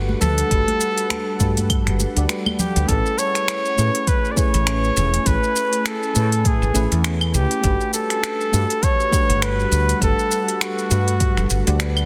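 A mellow FM electric piano, an ethereal, airy pad and a woody fretless electric bass open this sunny, smooth sunset chillout excerpt together, set in A major at 101 BPM in 4/4 with a swung sixteenth-note feel. Bright acoustic congas and bongos sit in the background only briefly, stopping at 2.7 seconds. Meanwhile a deep house kit of claves, finger snaps, smooth hi-hat and shaker, with soft clipping on its snare, plays alongside a layered, produced electronic kick. A flugelhorn carries the jazz-style solo melody up front, with light vibrato and a touch of delay. The fretless bass is dark, round and direct, treated with lush chorus, while the electric piano's fast-attack, decaying chords carry chorus and delay, and the sustained pad adds ensemble chorus and its own reverb. The harmony moves from Gmaj9 to Amaj9 at 2.9 seconds and later back to Gmaj9, all within a digital ambience and a dense, heavily limited modern master.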